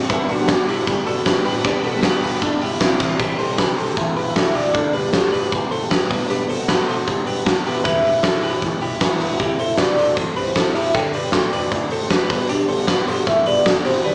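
Jangly indie pop at 155 BPM with a youthful, nostalgic glow, cut from a longer piece and captured like a band playing live in one room through a small speaker, with moderate large-studio reverb. An up-front rock kit with a punchy kick and a fat snare drives clean, compressed twelve-string electric arpeggios over a dark, full-bodied acoustic guitar in the background and a very quiet, woody pizzicato upright bass, while a faint swirling, phased string machine and a barely audible jingly tambourine colour the opening before dropping out near 3 seconds. At 3.2 seconds a velvety synth lead with chorus and tremolo takes the melody over chords moving from C through Dsus4, Gmaj7 and Em7.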